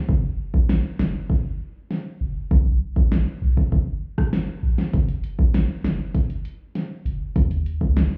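Heard muffled as if through a wall, this short dancehall excerpt carries the dull, reverberant air of a club, shaped by EQ. The mood is summery and bouncy, set on a straight four-beat feel. A punchy sub bass and a deep house drum kit both sit up front, playing from 0.1 to 8.1 seconds. The bass is a deep, sustained sine tone with a fast, pitch-dropping attack, spanning F#1 to D#2. The electronic, layered kit brings a deep kick, a fat snare, hi-hat and rim click, with a tape-warm character from being re-recorded in a small room. The opening stretch up to 4.9 seconds is a break.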